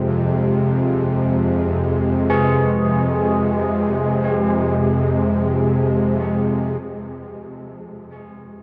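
A tense, string-like bowed drone, an airy, detuned pad with chorus, bronze carillon bells playing delayed arpeggios and a very quiet, pure quartz singing bowl that stops at 6.9 s all sound from the outset in this desolate, cavernous dark ambient drone in free time and F minor, cut from a longer piece and steeped in a huge reverb and the warbly pitch drift of worn cassette tape.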